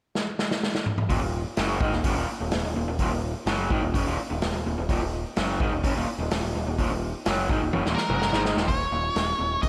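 A raw, double-tracked garage guitar drives this gritty, swaggering classic rock excerpt, its overdriven, picked riff sitting up front with a lo-fi edge and a slapback echo. The straight 4/4 groove moves at 126 BPM in Eb dorian, opening on a drum fill from the vintage kit before the riff and a growling, overdriven picked electric bass come in together at 1.1 s over an Ebm chord. The acoustic drums sound warm in a pumping room, with a punchy kick, a medium-tuned snare, a rolled-off top, hi-hat and toms, and a second fill arrives just before the harmony shifts to Eb5. At 8.0 s a dark octave-fuzz lead guitar enters up front, its distorted, picked melody sitting high above the low bass. Lush hall reverb and small room ambience give the mix a big arena sound.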